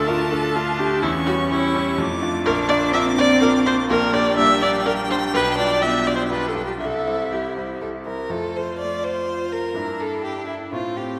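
From the first beat, a spirited, lively classical-period piano quartet movement in F major at a quick 124 BPM in 3/4 sets a bowed violin's focused, vibrato-touched melody over a clear cello second line, while a close, even viola and a bright, polished concert grand with deep bass sit up front as accompaniment, all bathed in the generous reverb of a recital hall, as this fragment cut from a longer piece moves through minor-leaning harmony before settling onto F at 8.3 seconds.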